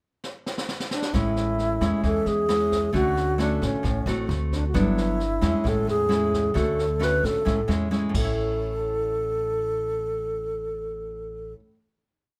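A distant, roomy brushed drum fill opens this sunny, romantic bossa nova at 133 BPM in A major, then an airy, tongued alto flute with vibrato sings hook phrases up front over classical fingerpicked nylon-string guitar playing thumb bass and syncopated plucked chords, woody, dark pizzicato upright bass on dotted root and fifth, and a bossa brush groove with a boomy kick and high-tuned snare, moving from Amaj7 through Dmaj7, D7 and Gmaj7 until the drums stop at 8.2 seconds and the others close on a final A chord in light reverb.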